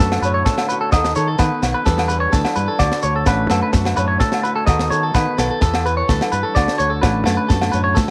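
This short cut from a longer highlife guitar-band piece opens with nearly everything in motion at once: an up-front clean electric guitar spinning bright, twangy arpeggios through tape echo over a tight, polished funk drum kit with a high-tuned snare and a tight kick. At 128 BPM in a straight 4/4, the danceable, carefree groove sits in D major, cycling through Dmaj7, B7/D#, and Em7. Beneath it, a fingered electric bass adds a round, punchy bottom, while a fingerpicked flamenco guitar fills out the accompaniment with a warm acoustic tone. Shekere and ringing agogo bells sit in the background, the shekere sounding grainy and saturated, and very quiet congas with a vintage, thick-skinned tone slip in at 6.6 seconds. Moderate spring reverb and a small room ambience give the mix a lively, close feel.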